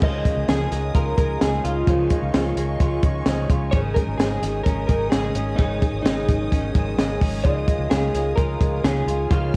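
A compact cocktail drum kit sits up front in this breezy, bright piece of jangly indie pop at 129 BPM in 4/4, its punchy kick, high-tuned snare, hi-hat and crash sounding smooth and dark in a small room. A vintage fingered electric bass, foam-muted and round, holds the low end. An electric guitar through a small old amp carries the slightly broken-up, lo-fi melody, coloured by analog chorus and analog delay, while a second amped guitar picks arpeggios underneath. A full-bodied jumbo steel-string acoustic with fresh strings is fingerpicked in the background, and a lush, woody string section bowed with vibrato sustains chords high above. The harmony in Db major moves from Dbadd9 to Absus4 at 3.7 seconds and returns at 7.5 seconds, all captured as a dry home recording on cassette.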